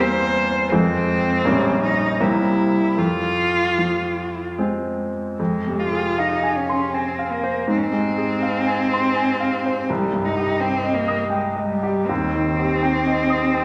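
A solo bowed cello and a grand piano begin together in a serene romantic classical duo in triple metre with a flexible, rubato feel. The cello carries the melody with a rich, expressive tone, soft attacks, vibrato and portamento, while the brilliant, polished piano accompanies with long sustain, both sitting up front in a reverberant recital hall. After a first passage, a second section arrives at 5.4 seconds and lingers on minor harmonies until this cut from a longer piece ends at 13.6 seconds.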